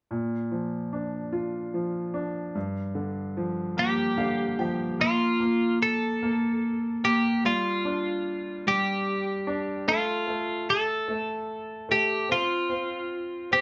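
A clear, vintage-toned concert grand piano opens this swaying, heartfelt pop ballad in six-eight, laying down smooth accompaniment with a deep bass end. At 3.8 seconds a bright, twangy twelve-string electric guitar enters up front with a clean, picked, compressed melody, just as the piano plays a short fill leading into a new section at 5.0 seconds. The band sounds as if it is playing live together in one room, with moderate studio reverb around this excerpt cut from a longer piece.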